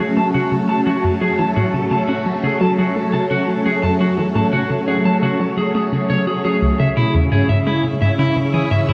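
Cosmic and mysterious, this short excerpt of ambient, sequencer-driven space music moves at 86 BPM in F# minor, shifting from F#madd9 to C#m at 6.6 seconds. A swirling, vintage string machine holds bright, up-front chords through ensemble chorus and phaser, while a dark, slightly broken-up electric guitar picks arpeggios through a low-pass filter and delay, and a hollow, bouncy square-wave pluck drives a riff colored by chorus, phaser, cassette tape and delay. A wet cathedral reverb with a 7.2-second tail sets the whole in a vast, echoing space.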